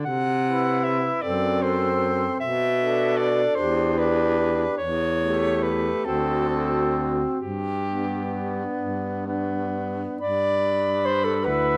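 Serene and tender, this classical excerpt for saxophone quartet drifts in a rubato 6/8 at about 42-52 BPM in G major, with a clear, up-front soprano saxophone singing the melody with light vibrato, a clear, soft-attacked alto saxophone on the second line entering at 0.4 s, a roomy, distant tenor saxophone adding accompaniment, and a warm baritone saxophone with vibrato anchoring the bass, all framed by a moderate recital hall reverb as the harmony moves from Cmaj7 through Bm7, Em7 and D7 to settle on G.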